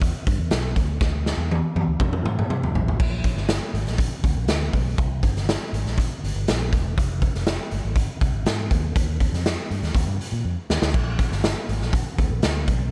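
A straight 4/4 groove at 121 BPM drives this uptempo 1960s-style soul excerpt in Bb mixolydian, with an uplifting, joyful mood. A raw garage drum kit sits up front, its punchy kick, medium-tuned snare, hi-hat, toms and crash cymbal sounding saturated and gritty, with a rolled-off top and a pumping, bright stone room around them. A drum fill runs from 1.0 to 3.0 seconds, and a shorter one arrives at 10.4 seconds. Underneath, a vintage muted fingered electric bass plays from E1 to C3, its amped tone dark, round and foam-muted. The production is dry and dark overall, giving the pair of instruments a close, vintage feel throughout this short cut from a longer piece.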